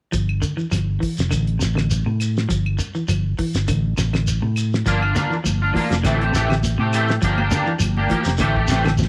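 A round, dark fingered electric bass sits up front through this hypnotic, driving afrobeat excerpt in G dorian, moving at 102 BPM in 4/4 with a light sixteenth-note swing. Beneath it, a cloth-damped drum kit of hi-hat, tight kick and fat snare thuds along with a dry, rolled-off top, while a grainy, mellow shekere and woody claves in the background fill out the percussion. A clean semi-hollow electric guitar picks hollow-bodied arpeggios in its low register over chords alternating between G5 and Am. At 4.9 seconds the harmony shifts to Gm7 and Am7, and a twangy electric guitar at the edge of break-up comes forward with picked stabs coloured by ensemble chorus. Bright, high-tuned congas with a thin skin join softly in the background at 5.2 seconds, all of it set in a small room ambience.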